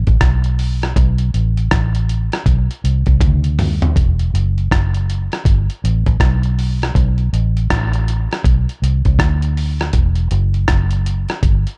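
The recording has a dark production with little reverb, leaving both parts dry and up front. This deep, spacious dub reggae clip, cut from a longer piece, moves at 80 BPM in 4/4 with a 62% swing on the sixteenths and a tuning reference of A4 = 443 Hz. A vintage electric bass opens it, played with the fingers and foam-muted for a round, amped tone that stays between E1 and D2. A sampler-style soul drum kit enters almost at once, compressed and gritty, re-recorded in a small room, with a thumpy kick alongside hi-hat, rim clicks and toms. The drums break into a fill from 3.2 to 4.0 seconds before settling back beside the bass for the rest of the single section.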